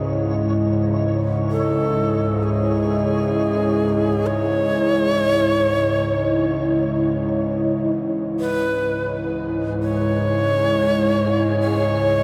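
In free time, this cavernous, ominous ambient fragment sets a breathy, bamboo-toned shakuhachi melody with tape echo up front over a deep, chorused analog pad, a tense, string-like bowed drone low in the range, and a faint flickering granular texture, all soaked in a huge, dreamy reverb.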